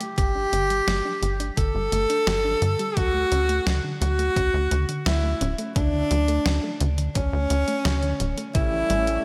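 An uplifting, romantic synthwave excerpt at 86 BPM in D major opens on a soft, round pluck spinning arpeggios in the background, dark and chorused with cassette-tape grain and delay, a filter sweep running across it throughout, alongside a clean 12-bit drum machine's hi-hat and fat, tape-warm snare. From 0.2 seconds a breathy tenor saxophone takes the solo melody up front, mellow and close-miked in a jazz style with light vibrato and scooped notes, trailed by tape echo and slapback. A tight, nasal sequencer bass drives underneath with punchy sawtooth and square-wave plucks, tube saturation and sidechain pumping, joined by a thumpy electronic kick. The harmony moves from Gsus2 to Dmaj7 and then to A7, where a smooth, detuned supersaw enters at 8.5 seconds with sustained chords that pump along with the bass. A lush hall reverb gives the whole a big arena sound.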